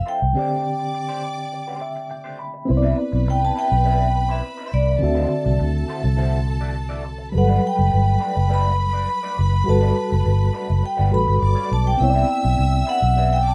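Hard-mallet vibraphone rings out a metallic melody over lush, bowed studio violins and a reedy, worn, slightly out-of-tune electric piano with fast tremolo, joined at 0.1 s by a dark, slightly broken-up electric guitar riff with wah and harmonic tremolo and at 0.2 s by a round, punchy, foam-muted bass up front, in this smooth, warm soul excerpt at 103 BPM in G major, where a break from 0.4 s ends in an electric piano fill before Cmaj9, D9 and Gmaj9 chords unfold in a rough, dry home-demo mix.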